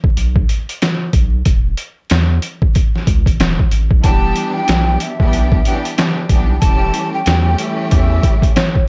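A swung, pitched-down sampler drum kit with a thumpy kick and medium-tuned snare opens this dark, moody boom-bap hip-hop excerpt, joined at 0.2 seconds by a round, deep analog bass that carries the opening break. At 4.0 seconds a lush, bowed symphonic string section with a cassette-tape tint and a distant, breathy jazz flute with analog delay enter together over minor seventh harmony. The gritty, dry hardware sound is dusted with vinyl crackle.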